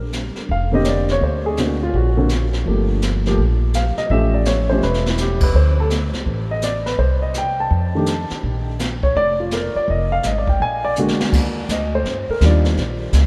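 A vast, echoing cathedral reverb surrounds this short swinging jazz piano trio excerpt, lending a sophisticated, warm mood to its brief run. The upright bass sits up front from the opening, plucked with a woody, growly tone on steel strings. A brushed drum kit joins at 0.1 seconds, heard distant and roomy with dark cymbals, a high-tuned snare and a boomy kick, adding fills just before 5.2 seconds and again near the 11-second mark. The baby grand piano carries the melody from 0.5 seconds, intimate and natural with long sustain and audible action noise, moving through rich harmony such as Bb69, Gm9 and augmented sevenths before settling onto Ebmaj9 as a new section begins at 11.3 seconds. The piano drops out at 12.8 seconds, leaving bass and brushes to close the cut.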